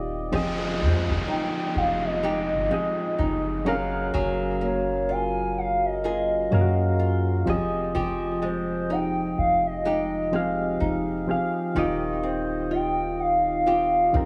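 A hollow, woody clarinet-like synth lead carries the melody from 0.8 seconds, its soft, detuned square-and-triangle tone layered with noise and shaped by vibrato, chorus and tape echo. This is a moody, longing piece of contemporary R&B, cut from a longer track, moving at a slow 63 BPM in 4/4 with a swung sixteenth-note feel. Up front sit round, full-bodied electric-piano-like synth keys with a vintage, warbling chorus, alongside a fingerpicked nylon-string guitar playing small, acoustic arpeggios through tape echo. Underneath, a long, sustained 808-style bass adds deep, mellow sine-wave weight, while an electronic downlifter sweeps through the first eight seconds. Between 8.4 and 11.6 seconds a very quiet, bell-like celesta adds a delicate, sweet glint over harmony that moves from Fm9 to Gbmaj9, back to Fm9, and settles on Eb69, all set in light reverb with a small room ambience.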